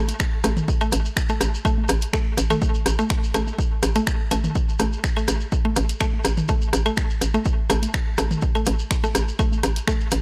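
A hollow, knocking FM bass opens this quirky, cool minimal techno piece at 0.0 s, bouncy and up front, thickened by tube saturation and pumping against the sidechain. Within a fraction of a second a house drum kit of finger snaps and hi-hats arrives with a booming analog drum machine playing claves, congas, rim clicks and toms through a digital delay. A grainy, mellow shekere sits in the background in a small room, and a punchy, layered electronic kick enters at 0.2 s. At 0.4 s a woody, mallet-like FM pluck brings in the riff, round and percussive with a bright noise layer, shimmering with chorus, dub echo and its own sidechain pumping. The groove moves at 124 BPM in 4/4 with a light 16th-note swing, tuned slightly below standard pitch, and the mix is dry and tape-tinged throughout this short cut from a longer track.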